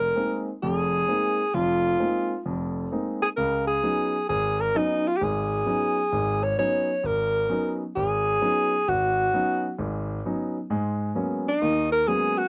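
Jazz with an intense, spiritual mood, swinging in 4/4 at 131 BPM, this short passage cut from a longer piece features a breathy alto saxophone carrying the melody up front with a warm, vintage subtone. A clear, polished grand piano accompanies beside it, moving through suspended ninth chords before shifting to a G#m11 at 10.7 seconds as a new section begins. The sound is dry and close, like a 1970s studio session with light reverb, and both instruments play throughout until about 12.5 seconds.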